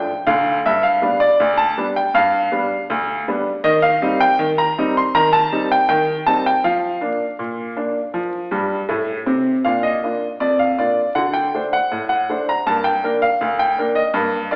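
Lively and jaunty, this short excerpt of ragtime piano at 80 BPM in 2/4 features a clear, woody upright piano played solo from D2 to C6, smooth and vintage in tone and up front, settling into Bb major from 3.6 s, with a fill at 8.5 s leading into a new section at 9.6 s, all heard through wet recital hall reverb with vinyl crackle and an AM radio sound.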